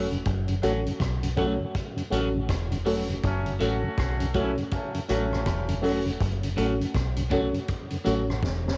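This short cut from a longer roots reggae piece carries the light reverb of a home cassette recording, serious and laid-back at 81 BPM in 4/4 with a swung sixteenth feel, resting on a single F# minor chord. A deep dub fingered electric bass, round and foam-muted, sits up front, while a vintage acoustic drum kit with a punchy kick, high-tuned snare, rim click and hi-hat has a rolled-off cassette character. A dark, woody upright piano plays stabs with audible action noise and slight detuning, beside a clean picked electric guitar treated with phaser and tape echo. A mellow tonewheel organ hums in the background through chorus vibrato, a slow rotary speaker and tape echo. A brilliant trombone section with light vibrato and soft attack plays a tight second line from 3.2 to 5.8 seconds, touched with tape echo, and a drum fill arrives at 8.4 seconds.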